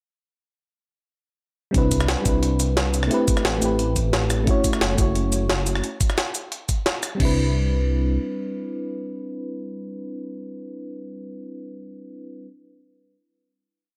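A deep, rumbling detuned saw bass with long gliding notes anchors this dreamy liquid drum and bass piece at 176 BPM in C lydian, as a knocking, layered electronic kick and a gritty, pitched-up jungle sampler-style kit with a high-tuned snare, rim clicks, cabasa, closed hat and crash roll through a two-step drop from 1.7 seconds, stopping at 7.3 seconds, while a soft, round FM electric piano with chorus and digital delay plays held chords with syncopated pushes through Cmaj9, Am9 and F#m7 before settling on a final Cmaj9 that rings until 12.4 seconds, all in a dry mix.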